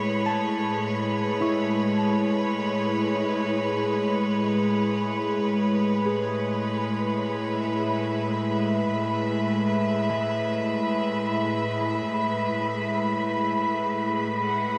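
The recording is soaked in a huge, wet ambient reverb with a 7.5-second decay, and its top end stops at 10.7 kHz, so the sound is soft and veiled. This serene, peaceful ambient piece floats in free time in A major, tuned to A4 = 439 Hz, and rests on a single Amaj9 chord, as if lifted from a longer work. Up front, a rich chamber string section bows sustained chords with light vibrato and an earthy tone, bathed in shimmer reverb. In the background, a mellow analog drone of sawtooth and pulse-wave tones with pulse-width modulation and chorus slowly evolves. A dark, breathy, wind-like noise texture holds a tuned B5 through its own reverb and shimmer, and a very quiet concert harp adds fingerpicked, ringing arpeggios until 14.0 s, while the strings, drone and texture sustain to 14.8 s.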